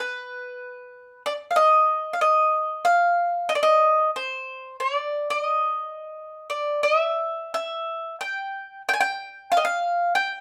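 The rhythm moves in 4/4 at 91 BPM with uneven, rubato beats, giving this brief fado excerpt a longing, mournful cast. A lone acoustic mandolin carries the whole passage, its picked double strings sounding woody and warm as it stays up front in the upper register between B4 and Ab5. Moderate studio reverb lends the instrument a modest sense of space.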